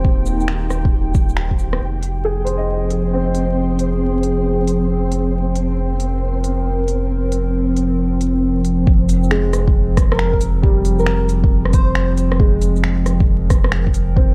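Melancholic and ghostly, this future garage excerpt moves at 136 BPM in 4/4 with a swung sixteenth-note feel in F minor, cut from a longer piece and wrapped in light reverb and vinyl crackle. A warbling, nostalgic pad holds detuned, mellow chords under chorus, phaser and its own reverb, while a clear, woody upright piano plays accompaniment through tape echo, both breathing with sidechain pumping alongside a round, sine-based sub bass that sits up front. An organic electronic drum kit of finger snaps, smooth hi-hats, rim clicks and shaker runs nearly throughout, and a deep, tape-warmed electronic kick sounds at the start, drops out, then returns at 8.9 seconds as the harmony shifts from Fm11 to Fmadd9. A grainy, flickering granular texture hovers in the background until that same point. At 10.1 seconds an airy, dreamy lead with vibrato, portamento and a dark noise layer drifts in briefly through chorus and tape echo.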